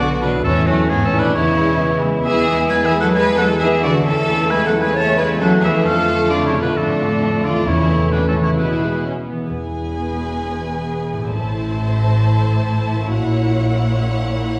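Cinematic heroic adventure score at 133 BPM in 4/4, triumphant and soaring in A major and shifting to E major at 9.5 s. Throughout, a lush, vibrato-rich violin section carries the melody over a softer-attacked second violin line, smooth violas, clear distant cellos and full-bodied double basses, while a bright, present solo oboe sings a second line until 9.0 s, a tight trombone section holds sustained chords, a very quiet fingerpicked harp rings out arpeggios, and hard-mallet timpani strike close and dry, all set in a reverberant concert-hall acoustic.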